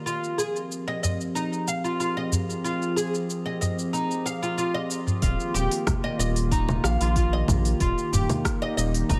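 A woody, plectrum-plucked oud sits up front with delayed arpeggios over a warbling, lo-fi pad that carries sustained Fm7 chords through a filter sweep, with chorus, sidechain pumping and a very quiet metallic singing bowl ringing in the opening seconds. This hypnotic, organic downtempo excerpt moves at 93 BPM in straight 4/4, with a tape-warm afro-pop kit of congas, smooth hats, rim click and shaker alongside a small, band-limited udu. At 5.2 seconds the harmony shifts to Eb as a round analog bass and a deep electronic kick drum enter, all set in light reverb.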